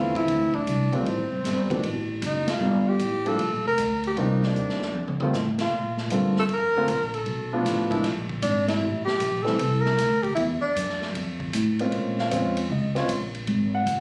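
Small-group swing and bop jazz in D minor at 155 BPM with a cool, late-night mood, this phone-captured clip from a longer piece puts a dark, breathy tenor saxophone up front with vibrato and scooped, whispered subtone notes until 11.1 seconds, over a woody upright piano with long sustain, a pizzicato upright bass on steel strings, and a vintage drum kit, sitting lower in the mix with a tight kick and rolled-off top, that fills from 4.6 to 5.3 seconds, while band accents punctuate the swing and club reverb and compression color the room.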